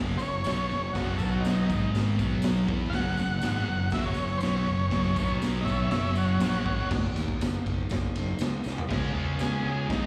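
A straight 4/4 garage rock groove at 121 BPM drives this rowdy, swaggering excerpt, where a thick, bright, double-tracked fuzz guitar riff and a round, overdriven fingered bass sit up front beside a raw garage kit with a punchy kick and dark cymbals that pumps in its small room, while a buzzy vintage combo organ with heavy vibrato takes a solo until 6.9 seconds, a jingly tambourine rattles in the background, and a drum fill at 8.7 seconds pushes into the closing section.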